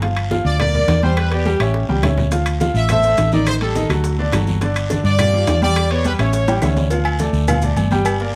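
Salsa in D minor at 209 BPM, driving and passionate, cut from a longer piece, with an up-front trumpet section playing a tight, bright melody with light vibrato from 0.5 to 6.7 seconds over a woody, short-sustain upright piano and a dark, round hollow-body electric bass that sits up front. Ringing metal-shell timbales and agogo bells sound close and dry, while low-tuned congas, high-tuned bongos and cowbell, woody claves, a raspy guiro and grainy maracas entering at 2.3 seconds fill the background. Drum fills mark the passage, and the harmony moves through chords such as Gm7, A7 and Dm9 before settling on Dm at 6.9 seconds under light reverb.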